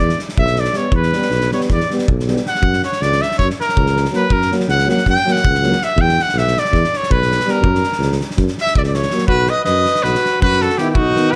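Driving in a straight 9/8, this fiery, virtuosic fragment of Balkan brass band folk sets a clear, roomy trumpet up front soloing with slapback echo over a mellow tuba bass and a loose acoustic drum kit with a punchy kick and medium-tuned snare, while a smooth-topped euphonium and a vintage-toned trombone with light vibrato hold the accompaniment in the background, and at 9.3 seconds a bright alto saxophone with vibrato enters on a second line, all in light reverb.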